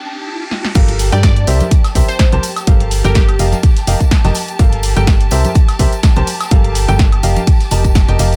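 A clear concert grand piano riff leads this energetic, soulful piano house excerpt in G minor at 125 BPM, its open tone carrying deep bass beneath the sidechain pumping. The piece opens with a brief break where an electronic riser and sustained chords from a rich, bowed chamber violin section set the scene, while a punchy analog drum machine enters as a drum fill sounds just before the drop lands at 0.8 seconds. From there a round, dark FM bass sits up front with a fast attack, pumping alongside a layered, tape-warm electronic kick that drives the 4/4 pulse with a light 16th-note swing. The drum machine adds crash, hi-hat, shaker, snare and woodblock with a large-room sheen, while ringing tambourine and softly played congas sit close and dry in the background, and a very quiet jazz brush kit adds natural hi-hat and snare. At 1.1 seconds a glassy, crystalline wavetable pluck enters with a brief detuned melody, shimmering through chorus and digital delay. 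The harmony cycles through Gm9, C7 and F9sus4, all held together by a small room ambience.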